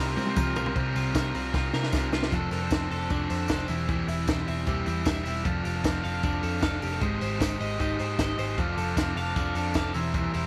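A bright, twangy twelve-string electric guitar rings out arpeggios across this short, youthful slice of jangly indie pop in F major, moving at a straight 153 BPM in 4/4. Beside it, an up-front, overdriven electric guitar adds warm, picked accompaniment, while a vintage foam-muted picked bass sits underneath with a dark, round, punchy tone. A compact cocktail drum kit enters at 0.2 seconds, dry and acoustic with a high-tuned snare and punchy kick, opening with a fill and adding another before the harmony settles on F6 at 2.3 seconds. A jingly tambourine, close and dry, sits in the background with the drums, and a buzzy combo organ with light vibrato appears briefly at the start, then returns from 8.6 seconds. Chords such as C7/E and Abmaj7 color the progression, all set in light reverb and studio ambience.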